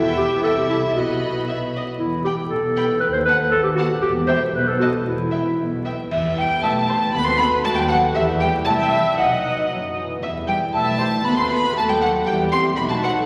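A round, soft-mallet marimba and a very quiet, sul tasto violin section carry the melody of this playful, sneaky and whimsical film cue in E minor at 117 BPM, over an up-front violin second line, a dark clarinet that drops out at 5.8 s, smooth-topped viola accompaniment, ringing thumb-plucked harp arpeggios and woody cello with double bass. At 6.1 s a band accent brings a soft touch of clash cymbals and concert bass drum, and a mellow, vintage French horn section enters with sustained chords in the background, wrapped in a wet scoring-stage reverb and a layer of vinyl crackle.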